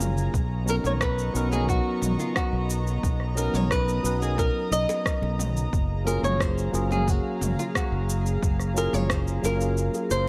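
Lightly reverberant and sunny, this 89 BPM sunset chillout piece in B lydian opens with a clean tine electric piano through tape echo, an airy, breathy chorused pad and a growly, overdriven fingered bass up front, over a small-room deep house kit of rim click, shaker and toms with a punchy electronic kick from 0.3 s. A fingerpicked flamenco guitar carries the tape-echoed melody from 0.7 s, and tight, high-tuned bongos strike briefly with hard hands in the background at 4.9 s and again at 9.4 s. The harmony moves from Bmaj9 to F#maj9 at 5.7 s.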